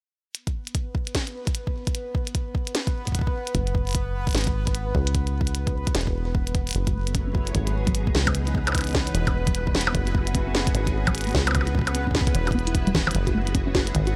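A dry, close-sounding cut from a longer melancholic IDM piece in F# minor at 150 BPM, swung on the 16ths, opens with an up-front glitchy kit of clicky hats, percussion blips and a tiny delayed snare over a deep electronic kick, while a bubbling sawtooth texture with random filter steps, chorus and sidechain pumping sits low beneath. A rubbery, saturated acid bass with a resonant filter pluck enters at 3.5 seconds over suspended chords, and after a drum fill at 6.5 seconds the harmony settles into minor ninth chords. There a nasal, lo-fi pluck with cassette-tape warble and delay plays arpeggios in the background, and a silky vintage string machine with ensemble chorus holds soft chords from 7.0 seconds.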